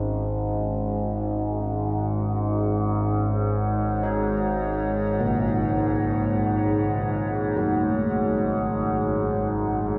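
From the first moment, a deep, detuned analog pad holds dark sustained chords over a resonant drone of sweeping, ring-modulated overtones, both up front in a cavernous, unsettling dark ambient piece in free time. At 4.0 seconds, mellow, bronze carillon bells join with soft delayed arpeggios in the background, all bathed in a huge, wet reverb with an 8.6-second decay.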